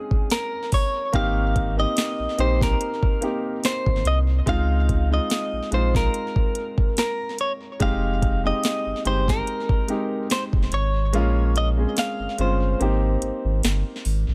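Romantic and tender, this contemporary R&B excerpt moves at a slow 72 BPM in Ab major with a light sixteenth-note swing, its chords drifting through Bbm9, Abmaj9, Dbmaj7 and Fm7. A bright, clean, direct-recorded electric guitar carries the melody up front with tape echo, over a baby grand piano with a natural tone and short sustain, an electronic drum kit with a knocking kick, sharp snare and metallic hats that also carries tape echo, and a deep, thick, saturated sub bass that enters at 1.1 seconds. The mix is dry on reverb but heavy on echo, and the kick drops out from 11.1 seconds until the cut at 14.3 seconds.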